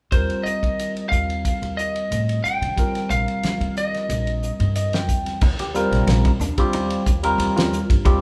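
Electric jazz fusion at 91 BPM in a straight 4/4, soaring and funky, this short cut from a longer piece opens on Cm7/Eb with a lightly driven, twangy lead guitar singing the melody up front until 5.1 s over a barky tine electric piano colored by phaser, a woody pizzicato upright bass, and a damped 70s drum kit with a fat snare and dark cymbals. The electric piano plays a fill from 4.4 s, and at 5.4 s the harmony moves to Ebadd9 as a scooped, clean electric guitar adds quiet stabs in the background. The band sounds like it is playing live in one room, set in a moderate large studio reverb.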